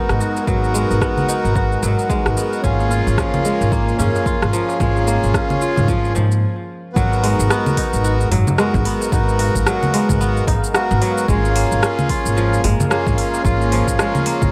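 Light reverb and a small-room ambience frame this meditative, mystical fragment of organic downtempo, cut from a longer piece and moving at 111 BPM in 4/4 with a swung sixteenth-note feel in G# dorian. A reedy, breathing hand-pumped harmonium sits up front with accompaniment treated with delay and sidechain pumping. Behind it, a smooth, detuned sawtooth pad holds soft-attack chords with chorus and a moving notch, while a bright, crisp kora rings out fingerpicked arpeggios through its own delay. A woody pizzicato upright bass on steel strings anchors the low end and pumps with the sidechain, and the groove comes from a punchy, overdriven electronic kick layered with an overdriven deep house kit of congas, metallic hi-hat, rim click and shaker. A very quiet darbuka, deep and distant with a clay shell and natural skin, adds acoustic texture as the harmony moves from G#m7 to A#m7/G#, and a brief stop at 6.4 seconds sets up the second half from 7.0 seconds.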